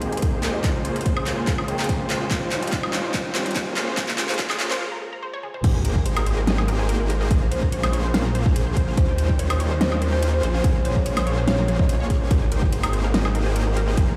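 A punchy, overdriven electronic kick drives this lush, emotional half-time future bass excerpt alongside an up-front pop drum kit with a fat snare and metallic hats, a thick, chorused detuned saw bass, huge sidechain-pumped supersaw chords under a filter sweep, a bright, warbling unison pluck playing arpeggios, a mellow tine electric piano that stops at 5.7 seconds, and a very quiet riser and sub drop leading into the drop at 5.6 seconds, where a woody, ringing kalimba carries the melody in the background, set in a stone-room reverb.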